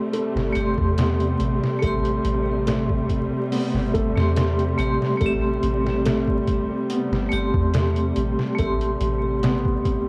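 A crackling small-room haze frames this brooding, melancholic trip hop excerpt in A minor at 71 BPM, where an up-front, bright vibraphone struck with hard mallets rings over an Am7 chord with tremolo and tape echo, lush bowed strings sustain chords beneath, a muted felt piano murmurs arpeggios in the background through tape echo, a gritty, pitched-down sampler-style drum kit with a thumpy kick enters at 0.1 seconds, and a deep, round 808-style bass joins at 0.4 seconds.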